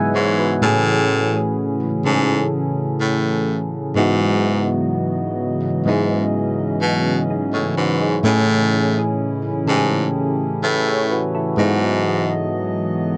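A brief fill on soft, round electric-piano-like synth keys opens this moody, late-night R&B fragment at a slow 63 BPM, with the keys carrying the accompaniment through chorused chords that move between C#m11/G# and Amaj7. A hollow, flute-like pad sustains dark, detuned chords underneath, while an edgy baritone saxophone enters at 0.2 seconds to hold down the bass line up front, with jazz-style vibrato, until 12.4 seconds. A moderate plate reverb gives the sound a spacious, lingering tail.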